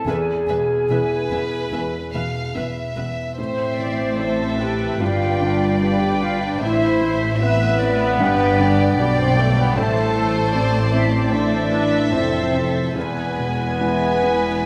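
A dark, woody violin section carries the melody from 0.1 s, bowed sul tasto with vibrato and set at a distance, in this moving, longing cinematic film score cut from a longer piece. Beneath it, a mellow French horn section holds sustained chords, while a felt-muted upright piano adds soft, intimate accompaniment with audible action noise. A chamber violin section and a large, airy flute ensemble trace second lines, the flutes in straight tone and set back in the mix. A viola section fills in the accompaniment, and a cello section joins a double bass section on the bass line, these three string parts played sul tasto with light vibrato. A very quiet concert harp rings out fingerpicked arpeggios as the rubato phrasing moves between E, Amadd9 and G chords, bathed in a wet scoring stage reverb.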